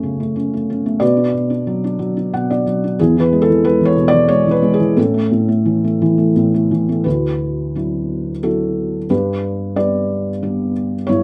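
A dark, intimate recording places a felt-muted upright piano up front in a moderate studio reverb, its thick felt lending a soft, mellow tone with audible action noise. This hopeful, lyrical classical fragment, cut from a longer piece, moves at 90 BPM in 3/4 with a rubato feel and is tuned to A4 = 441 Hz; the solo piano spans D2 to F#5, passing from F#m through Bm and E to A, with a brief fill between 2.0 and 3.0 seconds. At 7.1 seconds the music shifts from A major to D major, settling on Dadd9 and then G.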